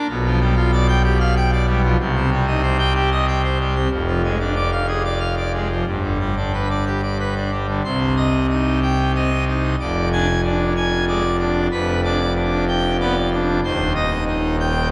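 A dramatic, stormy classical organ toccata in C minor at 93 BPM in a straight 3/4, this excerpt features a solo pipe organ on full organ with brilliant mixtures and a majestic, romantic voicing, spanning Eb1 to Ab5 and sitting up front in a resonant church reverb of 3.4 seconds, as its harmony moves from G7/B through Cm, Ddim/F and G before a second section begins at 7.9 seconds and closes on Cm/Eb.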